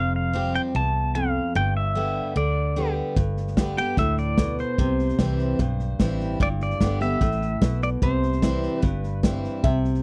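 A straight, steady 4/4 pulse carries this short honky-tonk and classic country excerpt, heartfelt and easygoing in mood. A bright, full-bodied dreadnought acoustic guitar, picked with fresh strings and sitting up front, lays down the accompaniment over a dark, round, foam-muted vintage electric bass that stays low and punchy. The natural country drum kit joins at 3.2 seconds with hi-hat, a punchy kick and a medium-tuned snare heard in a studio room. Above them the pedal steel guitar carries the melody, clean, compressed and twangy, played with fingerpicks and slide, with volume swells and a forward place in the mix. At 9.6 seconds a metallic, nasal lap resonator guitar slides in briefly with a second line, over a dry, close 1970s-style studio sound.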